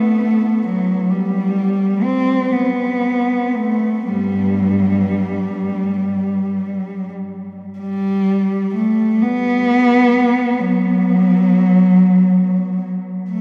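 Lonely and meditative, this brief classical passage for a single unaccompanied cello unfolds freely in 6/8, with an expressive rubato that lets each phrase breathe. The bowed cello carries the whole piece on its own from 0.0 to 13.4 seconds, moving between G2 and C4 with a warm, singing tone shaped by vibrato and portamento slides between notes. The instrument sits close and up front, while a cathedral reverb with a long 6.3-second decay surrounds it and gives the sense of listening from further back in a vast stone space. Around 7.8 seconds the music turns to a new section, carrying the same solitary reflection forward. The passage is cut from a longer work.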